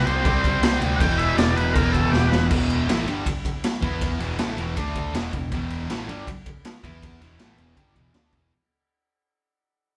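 A bright, double-tracked fuzz guitar drives this raw, menacing garage rock excerpt, sitting up front with a compressed, distorted riff in a straight 4/4. Over the opening bars a buzzy, overdriven vintage combo organ carries the melody with heavy vibrato, dropping out at 2.5 seconds. Underneath, a punchy picked electric bass holds the low end, while a gritty, saturated drum kit with a boomy kick, a medium-tuned snare and dark crash and ride cymbals pumps in a small room with a rolled-off top. A drum fill starting at 2.1 seconds leads into a second section built around E minor, and from there the band fades out to the end of the cut. Played live together in one room with moderate reverb, the sound is raw and rough-edged.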